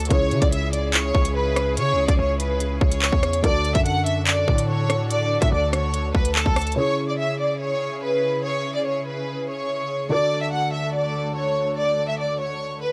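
Drill hip hop at 144 BPM in a half-time feel, tense and cold, built on C# minor and D chords in a dry, gritty recording cut from a longer piece. A reedy, gut-toned violin section carries the melody up front with light vibrato, over a felt-muted upright piano with audible action noise and dark, veiled con sordino strings holding sustained chords. A drill kit of hard-clipped kick, crisp hi-hats, handclaps and rim clicks drives alongside a heavy, distorted 808-style bass until both stop at 6.8 seconds, leaving the strings and piano to finish.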